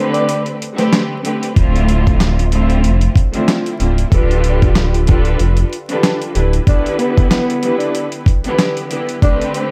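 Vinyl crackle and small-room ambience frame this reflective, moody boom-bap hip-hop cut at 94 BPM in D dorian, where a lush, bowed studio string section with a cassette-tape tint plays throughout; an overdriven, gritty sampler-style drum kit with thumpy kick, snare, hi-hat and handclaps sits up front; a deep sine sub bass with octave holds the low end from 1.6 to 6.6 seconds; and a breathy, raspy tenor saxophone returns at 6.7 seconds, growling with scooped notes and vibrato.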